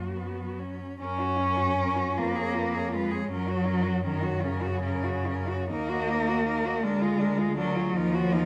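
Recorded with close, detailed microphones in a concert hall with a moderate 1.9-second reverb, this serene, lyrical classical fragment for cello ensemble unfolds in a rubato 6/8. A warm, distant cello sings the melody with portamento, a rich, focused cello traces the second line, an up-front accompanying cello shapes expressive, gliding phrases, and a dark, woody cello anchors the bass, all four bowed with vibrato throughout its 8.5 seconds.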